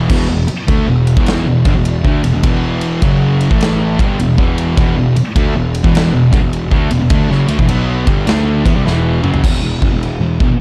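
A dark, warm studio sound with reverb frames this brief cut from a longer stoner and doom metal piece, brooding and hypnotic at 103 BPM in 4/4 with a swing on the eighth notes, set in E minor. Two thick fuzz guitars grind out the riff in the background, one carrying a warm distorted tone and the other a darker one, both picked. Alongside them, a bright, double-tracked overdriven electric guitar plays a riff until it drops out at 9.4 seconds. A growly, punchy fuzz bass, picked and overdriven, adds bright grit low in the mix. The acoustic drum kit sits up front with a punchy kick, a medium-tuned snare, toms, and crash and ride cymbals, and a drum fill from 8.9 to 9.4 seconds carries the music off the E minor chord into a closing E5.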